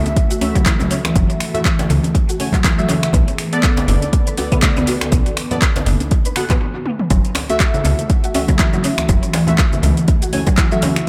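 A swung groove drives this earthy afro house excerpt, built on an overdriven, up-front electronic kick and a deep house kit of snaps, handclaps, metallic hats, shaker and toms, with a saturated djembe carrying metal rattles and ringing congas in a large, distant room behind them. Woody, FM mallet-like plucks spin arpeggios through dub echo, detuned sawtooth analog keys punch phased stabs, and an ethereal, airy pad holds sustained chords in the background, all three pumping with sidechain compression, while a smooth, gliding synth bass with vibrato and portamento enters at 1.2 seconds. The groove halts briefly at 6.6 seconds and a drum fill at 6.9 seconds launches the pattern again, all inside an echo-heavy mix with light reverb.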